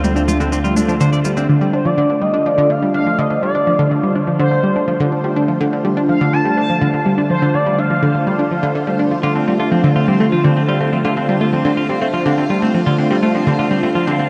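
Ambient, sequencer-driven space music with an expansive, hypnotic mood, this excerpt of a longer piece moves in a straight 4/4 and rests on a Dm7 chord. A swirling, vintage string machine holds sustained chords throughout, treated with ensemble chorus and phaser, while a nasal, sawtooth analog pluck repeats its riff up front with chorus, phaser and tape echo. In the opening moments a deep, round analog bass and tape-warm congas and shaker sound alongside picked, twangy arpeggios from a clean electric guitar, but the bass and percussion drop away at 1.5 seconds. A smooth, resonant synth lead with vibrato and lush chorus carries the melody from 1.7 to 8.8 seconds, after which the guitar returns with its tape-echoed arpeggios at 9.2 seconds. The production is dark and bathed in a huge, wet ambient reverb that stretches every sound into a vast space.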